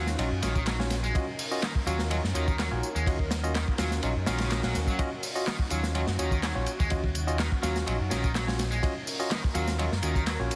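A gritty, up-front breakbeat groove powers this energetic, funky breaks excerpt at 125 BPM in 4/4, built on a single Ebm9 chord in Eb minor. A distorted electric guitar riff, bright and scooped with dub echo, starts at 0.0 seconds alongside barky, lightly overdriven tine electric piano stabs heard through a combo amp and a round, punchy picked electric bass. From 0.1 seconds a crunchy acoustic breakbeat kit of kick, snare, hi-hat and ride drives the track with a tight kick, dark cymbals and a saturated, rolled-off top, joined by layered, overdriven electronic tambourine and handclaps that sound re-recorded in a large room. Behind them, a swirling, detuned sawtooth analog pad holds sustained chords in the background, its phaser and chorus giving it an evolving, moving notch while sidechain pumping makes it breathe. The mix has light reverb and small room ambience with a heavily compressed, radio-like sound, and the guitar stops at 10.4 seconds just before the rest ends in this cut from a longer piece.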